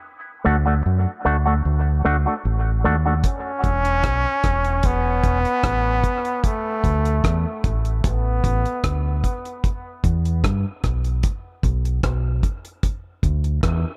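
An echo-heavy mix with light reverb and a touch of studio ambience frames this heavy, hypnotic dub reggae passage, cut from a longer piece and moving at 75 BPM in a straight 4/4. It opens on a break over a D chord, where a dark, clean electric guitar, fingered through an envelope filter, compressed and high-passed, rings out with dub echo. Beneath it, a deep fingered electric bass, round and direct-amped, sits up front in the low register and carries on to the end. At 3.2 seconds the guitar has fallen away, and a dry, smooth acoustic drum kit arrives with hi-hat, a tight kick and rim clicks, while the harmony alternates between E5 and D5. A brilliant, close-miked trombone then takes a pop-style solo with vibrato, its lines trailing dub echo until it stops at 9.2 seconds, leaving bass and drums to carry the groove.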